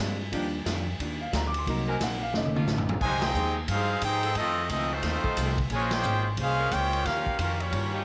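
Light reverb and a small-room ambience frame this dramatic, swinging big-band cut at 178 BPM, which opens on an intimate grand piano with audible action noise, backed by woody pizzicato upright bass, a dark hollow-body archtop guitar in the background, and edgy saxophone chords, before a drum fill leads into the next section at 3.0 s. There the music settles into F minor as a bright trumpet section carries the melody up front while a nasal, muted trombone section plays a second line in the background. Underneath, a roomy drum kit with dark cymbals and a punchy kick keeps the swing, with band accents at 3.2 and 5.9 seconds over rich extended chords.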